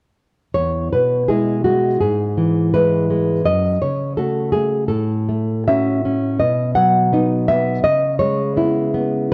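Tender and nostalgic, this short romantic piece for solo classical guitar unfolds in a gentle two-beat metre with a freely breathing rubato feel. The nylon-string guitar plays alone from 0.5 to 9.3 seconds, sitting up front with a full-bodied, thumb-plucked tone and deep classical character, ranging from its lowest bass string up to F#5. Its harmony moves through E, E/G#, F#m, F#m/A and B before ending on C#m7, as the excerpt is cut from a longer work. A moderate scoring-stage reverb lends the sound an airy sense of space. Over it all lies the patina of worn, warbling cassette tape, whose pitch drift deepens the wistful, memory-like atmosphere.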